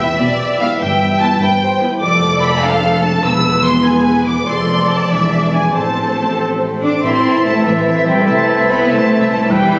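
Heard from a phone in the room, this short cut from a longer classical piece carries a moderate concert hall reverb and a compressed, roomy sound. In A minor and 6/8 at 98 BPM, with a rubato feel, the mood is dramatic and urgent. From the start, a lush first violin section sings the melody with expressive vibrato, up front yet slightly distant, over a second violin line with a smooth top. Violas and a focused, close cello section fill the accompaniment and bass, while double basses and a ringing, thumb-plucked harp playing arpeggios sit in the background. A very quiet, loose French horn section adds sustained chords from 6.8 s, and at 7.0 s an airy silver flute with a crisp attack, a distant oboe, a mellow clarinet and a bassoon join the texture. The harmony moves from E minor through D minor, E, F and E7 before settling on A minor at 5.7 s, later shifting to A minor over C at 8.3 s.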